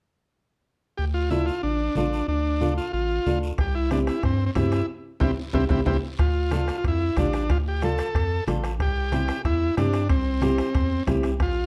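A buzzy, up-front combo organ carries the melody over a deep, round analog bass, damped congas and a raspy guiro in this fiery, passionate cumbia excerpt, with a fingerpicked nylon-string guitar joining moments later, a soft-beater bombo and ringing timbales arriving at 3.6 s, and a drum fill with a band accent from 4.9 s leading into the second section, set in a dark, moderately reverberant large studio.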